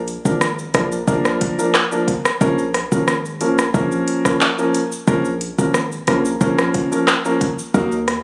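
Dancehall at 90 BPM with a bouncy, hypnotic feel, this short cut from a longer piece moves from Bb to Bb minor at 2.4 seconds over a punchy, heavy 808-style bass with a sine body, a noise layer, a fast attack and a decaying sound. An electronic afro-pop kit sits up front with a deep kick, metallic hi-hats, handclaps, rim click and shaker, all tape-tinged and produced, while a polished grand piano, present and long-sustaining, carries the accompaniment from 0.2 seconds. Light reverb and studio ambience frame the mix, which has the compressed, roomy character of a phone recording.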